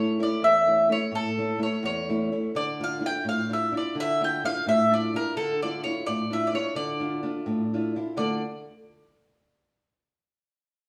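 A bright, woody mandolin with picked double strings sits up front and carries the melody of this wistful, romantic Italian folk serenade, set in D harmonic minor at 85 BPM in a straight 6/8, tuned to A4 = 443 Hz. A small, warm fingerpicked nylon-string guitar sits just as far up front and provides the accompaniment, moving from A to Dmadd9 at 2.5 seconds. Both instruments play until 8.4 seconds, and a Dm chord arrives at 8.2 seconds in this live, single-room excerpt with a wet stone-room reverb.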